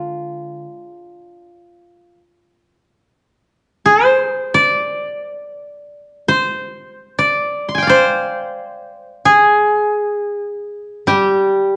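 This is Japanese traditional chamber music: a calm, austere passage cut from a longer piece, unfolding in free time. A koto carries the melody in its upper register, played with fingerpicks and sitting up front with a woody, dry attack. A second koto supplies a softer accompaniment lower down, heard at the opening until 2.2 seconds and returning at 11.1 seconds, just before the close. The tuning sits slightly under standard pitch, with A4 at 438 Hz. The recording has a moderate recital-hall reverb and the worn character of old cassette tape, with a warbling pitch drift and a dull top end, nothing above 10.4 kHz.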